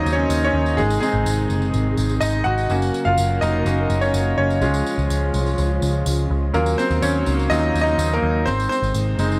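A bright grand piano with audible action noise and long sustain leads this uplifting, anthemic piano-driven pop excerpt, backed by a round, foam-muted vintage electric bass up front, lush bowed strings with vibrato sitting in the background, and a jingly tambourine, all in light studio reverb.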